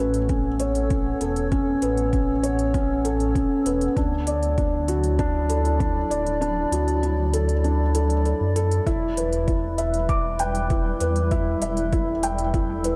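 This cinematic, melancholic piano and strings electronica excerpt at 98 BPM opens on a felt-muted upright piano riff, soft and intimate with audible action noise and tape echo, sitting up front over a blurred, evolving granular cloud pad of sustained chords with built-in reverb and sidechain pumping, and a deep, rumbling detuned saw bass thickened by tube saturation. Smooth electronic hi-hats enter at 0.1 seconds and a deep, layered kick at 0.3 seconds. The harmony moves from Aadd9 to Dadd9 at 4.0 seconds, the kick drops out from 6.4 to 8.9 seconds, and it returns as the chord shifts to Em. The production is dark and warm, with light reverb and a digital ambience.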